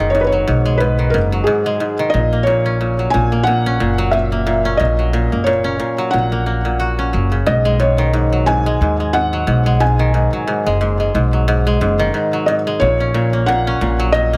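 A light reverb surrounds this short folktronica excerpt, where a felt-muted upright piano carries the melody in a soft, intimate, boxy tone with audible action noise and a digital delay trailing its notes. Beneath it, an up-front kora fingerpicks crisp, ringing arpeggios through its own digital delay, while a woody pizzicato upright bass with steel strings anchors the low end, all three playing throughout at 90 BPM with a gentle 16th-note swing. The pastoral, delicate mood rests on a simple move between B6 and F# in B major.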